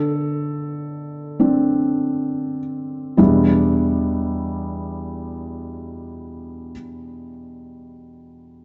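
Melancholic and intimate, this short excerpt from a longer piece is neoclassical minimalist piano in E minor, moving at a slow 34 beats per minute in dotted quarters within a 6/8 metre, played with a rubato feel. A felt-muted upright piano performs solo throughout its 8.6 seconds, sitting up front with a soft, mellow tone that spans from E2 to A4. The opening passage slows down over its first 3.2 seconds, resting on a D5 chord before the harmony settles onto Em7 at 3.2 seconds as a second section begins. Light reverb surrounds the instrument, and the dark production keeps the top end rolled off, lending the whole a hushed, close quality.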